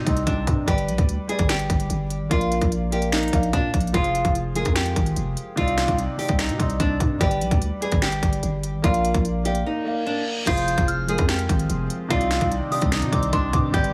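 Dark, eerie half-time trap opens on a small fingerpicked nylon-string guitar melody with tape echo over a muted, intimate felt-muted upright piano, a growling, buzzy 808-style bass and an up-front trap kit of hard-clipped kick, sharp snare, crisp hats, finger snaps and crash, until a brief break with an electronic reverse cymbal at 9.8 s leads at 10.5 s into a section where a pure FM synth bell with chorus, phaser and echo adds a gentle second line and a very quiet, breathy pad enters at 10.9 s, all in light reverb.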